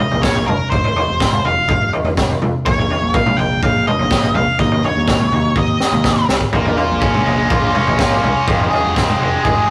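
Trippy and mysterious, this psychedelic rock excerpt in Bb minor moves at 124 BPM in a straight 4/4, with a dark, fuzz-drenched octave lead guitar carrying the melody until 6.3 seconds over a round, punchy overdriven picked bass and a gritty, up-front garage drum kit with a boomy kick, high-tuned snare and toms that plays a fill at 5.6 seconds, before a bright, double-tracked overdriven guitar riff enters at 6.5 seconds, the whole captured in a rough rehearsal-room sound with light reverb and warm saturation.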